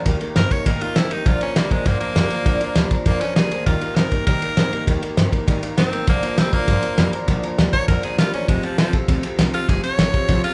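A raspy, forceful tenor saxophone solo tears into a rollicking, rowdy rockabilly groove from the first second, backed by a bright, full-bodied picked acoustic guitar, a twangy, slightly broken-up electric guitar riff with spring reverb, a woody upright bass and a cloth-damped, thuddy drum kit sitting up front with a fat snare and dark cymbals, the whole band playing live in one room with a rolled-off top.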